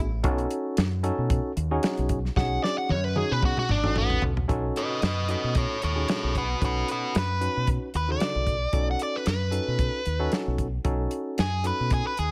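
Rollicking yet laid-back, this short cut from a longer straight-eighth soul blues piece moves at 113 BPM in B mixolydian, opening on a B9 chord with a barky, bright tine electric piano and a deep, round fingered dub bass beneath a dry, dark soul drum kit with a tight kick and rolled-off top. At 2.4 s a biting, overdriven guitar enters up front to carry the melody as the drums play a fill that runs to 4.5 s, where the second section begins. A small room reverb gives the whole band a close, intimate setting.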